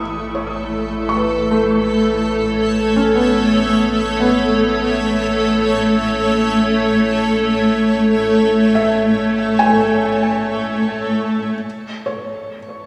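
A detuned, cloudy granular pad sits up front on a sustained A chord, while a felt-muted upright piano plays intimate arpeggios with its action noise audible, both lifted by shimmer reverb and the piano also by tape echo. This serene ambient piece in A lydian moves at 72 BPM in 4/4. A deep, round sine sub bass holds A1 in the background and fades out until it stops at 11.6 s, leaving pad and piano in a wet concert-hall reverb to the end of this cut from a longer piece.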